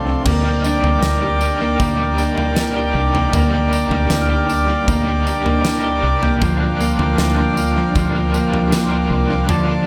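Reedy, airy accordion chords sit up front from the opening moment, joined at once by a dark, clean semi-hollow electric guitar picking arpeggios through analog chorus and tape echo, a round, foam-muted fingered bass low beneath them, and a bright, overdriven garage guitar, double-tracked and set in the background with tremolo and ensemble chorus. This melancholic, ethereal dream pop passage, cut from a longer piece, moves in a straight 4/4. A big-room acoustic drum kit arrives at 0.3 seconds with a punchy kick, fat snare, toms, tambourine and crash cymbal, its hits trailed by tape echo. Very quietly, a glockenspiel struck with rubber mallets adds soft, bell-like, ringing tones high above the band until 6.8 seconds. The harmony rests on Ebmaj7 before shifting to Gm7/D at 6.4 seconds, and the echo-heavy mix is dressed in light studio reverb.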